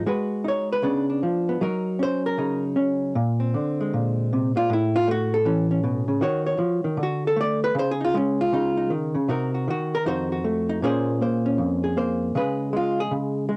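A home cassette recording with light reverb frames this short solo jazz piece, cut from a longer performance. A lone hollow-body electric guitar sits up front, its dark, clean tone carrying a compressed, tape-tinged character and a fingered touch. At 156 BPM in 4/4 with a swung eighth-note feel, the mood stays sophisticated and relaxed as the guitar ranges from F2 to D5. The harmony moves through rich jazz colours such as Abm7, Db7b9, Gb6, Amaj9 and Cm7b5 before F7b9 leads back into the opening section at 10.8 seconds. From there it settles on Bbm9 and a bare Db5 as the piece cuts off at 13.6 seconds.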